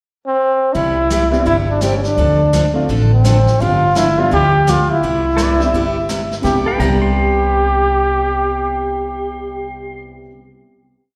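A muted trombone sits up front from the first moments, its nasal, bright straight-mute tone carrying a jazz-style, motif-based melody with vibrato and slapback echo over a playful, cheerful western swing groove. Beneath it, a full-bodied dreadnought acoustic guitar with fresh strings plays four-to-the-bar rhythm, while a woody pizzicato upright bass holds a two-beat root-and-fifth line and a polished upright piano adds syncopated comping in close voicings. A vintage brush kit with dark cymbals and a punchy kick keeps a brushed backbeat with sweeps on the snare until 6.9 s. From 5.4 s a clean, compressed pedal steel guitar joins with fingerpicked slide phrases, volume swells and blues licks. The band comes through a venue PA into recital-hall reverb, giving this short piece a live, roomy feel as it settles onto a final chord at 6.4 s.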